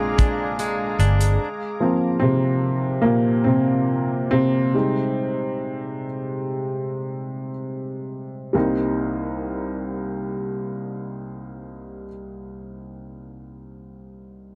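This heartbroken pop ballad in C minor opens at a slow 58-74 BPM with a woody, slightly detuned upright piano, a glassy FM pad with ensemble chorus and built-in reverb, twangy clean electric guitar arpeggios carrying harmonic tremolo, a dark, foam-muted fingered bass, and a punchy kick with hi-hat that enters at 0.2 seconds. By 2.0 seconds the piano carries on alone, its long sustain filling a dry, close 1970s-style sound as the tempo slows. The harmony moves from Bb7 through Bbsus2 to C minor before settling on Cm7 at 8.5 seconds.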